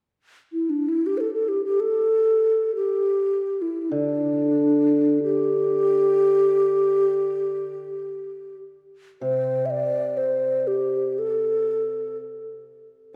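Graceful and pastoral, this Chinese traditional chamber piece unfolds in free time in the G zhi mode, with a low bamboo xiao carrying the melody from 0.5 seconds in an airy, hollow, straight tone, close-miked and up front. At 3.9 seconds a hammered dulcimer joins with low, shimmering, ringing accompaniment at a softer level, and both parts play until 12.2 seconds. A long, wet church reverb of 2.5 seconds surrounds this passage, cut from a longer piece.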